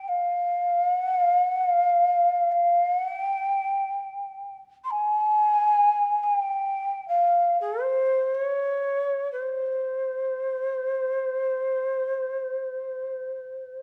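A lone end-blown bamboo shakuhachi opens with a hollow, airy tone, tongued attacks with a breathy chiff and vibrato, voicing a calm, austere line of traditional Japanese chamber music in a moderate recital-hall reverb with a dark production across this 13.8-second fragment cut from a longer piece.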